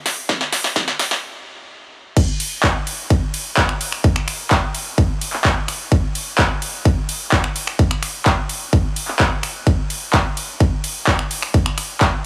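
A big-room dance drum kit of snare, handclaps, finger snaps, metallic hi-hats, ride and crash cymbals opens this euphoric, emotional EDM passage, cut from a longer piece and moving at 128 BPM in a straight 4/4. It is joined moments later by a layered electronic kick drum that sits up front, giving a punchy kick and snare in a layered, produced sound. The passage opens with a build-up and a drum fill that breaks off into a stop at 1.2 seconds. At 2.2 seconds the drop arrives, and the kick and kit drive it through to the end. A high-pass filter shapes the kick, snare, hats and cymbals, while light reverb adds a digital ambience around the mix.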